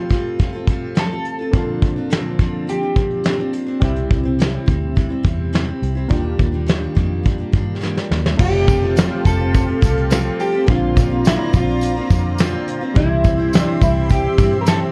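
Up-front soft brushed drums with a dark, rolled-off kit anchor this nostalgic, laid-back indie bedroom pop excerpt at 105 BPM in F major. A bright jumbo steel-string acoustic guitar with lush chorus and warbly pitch drift and mellow lo-fi synth keys accompany a dark, slightly broken-up electric guitar melody with analog chorus and delay. The melody drops out at 3.5 seconds and returns at 8.4 seconds. A round, foam-muted vintage bass enters at 3.8 seconds. A jingly tambourine joins the second section at 8.4 seconds, and a thick, detuned unison pad with phaser follows near 8.9 seconds, all under light reverb and a cassette-tape sheen.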